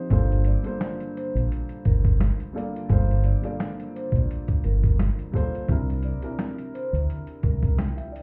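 Heard as if muffled through a wall, with vinyl crackle and a touch of club reverb, this moody, gritty boom-bap hip-hop excerpt in G minor moves at 86 BPM with a light 16th-note swing, shifting from Gm11 to C9 at 5.7 seconds. A compressed, pitched-down, tape-warm sampler-style drum kit with a thumpy kick and medium-tuned snare sits up front beside a round, punchy fingered electric bass. Underneath, a dark, woody, slightly detuned upright piano plays the chords, while from 0.5 seconds a soft-mallet vibraphone adds a faint, metallic, airy melody with slapback echo.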